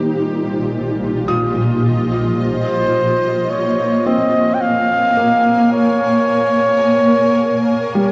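Ambient piece at 54 BPM in 3/4 and Bb dorian, serene and spacious, cut from a longer work and bathed in a huge, dark reverb. A cloudy, detuned granular pad holds sustained chords up front while a felt-muted upright piano plays soft arpeggios with audible action noise and tape echo, moving from Fsus2/Bb to Bbm9 at 2.4 seconds. At that moment a close-miked flugelhorn enters with a mellow, classical-style solo melody, also touched by tape echo.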